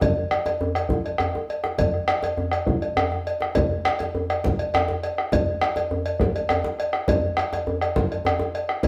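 A deep, dark bombo anchors this earthy, driving West African drum ensemble piece in 12/8, joined throughout by a metallic cowbell and a tight, cracking djembe played with soft hands, all three close and up front in one live room with a wet studio reverb, and the performance moves into a new section at 3.6 seconds in this short cut from a longer piece.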